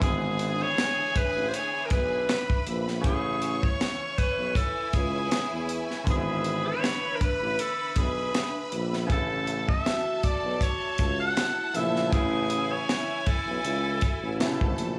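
A clear alto saxophone carries the melody up front in this lush 1970s-style soul excerpt, with subtone, scooped notes and light vibrato, over a lightly swung groove from a tight, dry funk drum kit and a vintage tuba holding the bass. Behind it, a bright, intense bowed string section plays a second line, while a polished concert grand piano provides accompaniment in the background and a swirling string machine sustains chords through ensemble chorus and phaser. A mellow soft-mallet vibraphone joins at 1.2 seconds, adding a ringing metallic texture, and the mix sits in light small-room reverb.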